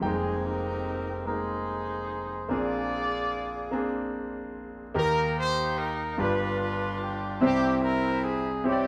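Soulful and hopeful, this short gospel fragment in Eb major sways slowly at 49 BPM in 6/8, with a tight jazz-style horn section carrying the melody with soft attacks and light vibrato, while a brilliant, up-front concert grand piano with deep bass accompanies through Fm11 and Bb9 before the harmony moves at 5.0 seconds to Eb, G7 and C, the band playing together live in one room with moderate studio reverb.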